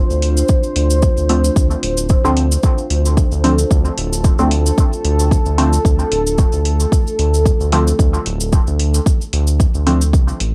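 A deep, overdriven electronic kick drum sits up front in this cavernous, hazy dub techno excerpt in D minor at 112 BPM with a 55% swing on the 16ths, its layered thump re-recorded in a large room. Beneath it, a round analog bass built from sawtooth, sine and ring modulation holds the low end from the start, sustained and dark with a fast attack and sidechain pumping. A moody, full-bodied ambient pad of detuned unison sawtooths with a sub octave swells in on a Dm7 chord with a slow attack, smeared by chorus, built-in reverb, pumping and cassette tape grit. From 1.3 seconds a muted, detuned dub chord stab enters, short and evolving under a filter sweep, colored by chorus, phaser, tape and dub echo. A metallic, tape-softened electronic hi-hat and a grainy, mellow cabasa from a small room fill in the top, all captured as a home recording on cassette with light reverb.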